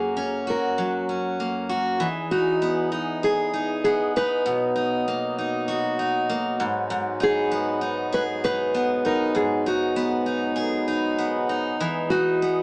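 Acoustic pop with a carefree, sunny mood, this short excerpt cut from a longer piece moves in a straight, easy 4/4. A thumb-plucked nylon-string guitar carries the melody in a classical voice, sitting above a full-bodied, picked steel-string dreadnought that provides the accompaniment and stays up front in the mix. At 2.0 seconds a pedal harmonium enters beneath them with sustained chords, its reedy, breathing tone sitting mellow and low in the balance. The harmony opens on F# and then moves through Emaj7, Bmaj7 and G#m7 before returning to Emaj7, giving the passage a gentle, open glow. The band sounds as if it is playing live in one room, with moderate studio reverb and a small-speaker character that lends the recording an intimate, homely feel.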